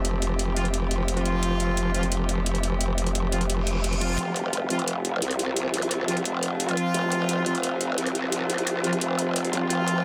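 Dark technical drum and bass at 174 BPM in a straight 4/4, this short excerpt cut from a longer piece feels mechanical and tense, opening on an F5 chord. An eerie, metallic FM drone with ring-modulated, inharmonic edges holds sustained chords from the start, its slow attack and long release softened by chorus and its own reverb. Beneath it, an aggressive growl bass sits up front, wobbling through a formant filter with a saturated, compressed bite and a touch of chorus. Layered electronic hi-hats with a metallic, small-room character tick through nearly the whole clip, while a warm classical-style brass ensemble enters at 0.6 seconds with echo-trailed stabs. A reverse cymbal sweeps in at 3.6 seconds to usher in a build-up from 4.2 seconds, with the cymbal and riser returning at the very end, all wrapped in light reverb and a dense, heavily limited modern master.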